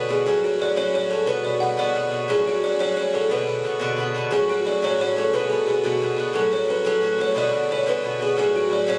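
Driving and spirited, this short Celtic folk jig moves at 118 BPM, counted in dotted quarters, in 6/8 time and B dorian, with the tuning set slightly under standard at A4 = 439 Hz. A buzzing kalimba carries the melody between F#4 and F#5 for the full 9 seconds, its thumb-plucked, woody tone ringing and airy as it sits up front. Beneath it, an Irish bouzouki provides picked accompaniment from A2 to F#4, its bright, metallic double strings lower in the balance. The harmony swings steadily between F#m and Bm, and the same strain plays twice, with the repeat starting at 4.3 seconds. Captured on a phone in the room with light studio reverb added, the clip is cut from a longer piece.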